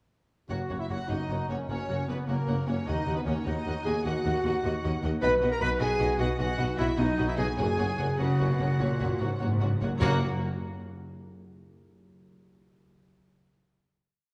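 A lush violin section carries the melody of this heroic, adventurous cinematic film-score cue in 12/8, doubled at the octave and joined by a distant second violin line, a roomy clarinet and a close-miked trumpet doubling the tune, smooth violas, a dark, very quiet French horn section, ringing harp arpeggios that sound on until 12.4 seconds, a bass of cellos, double basses and a faint tuba, and round soft-mallet timpani strokes entering at 7.6 seconds, set in a reverberant scoring-stage space.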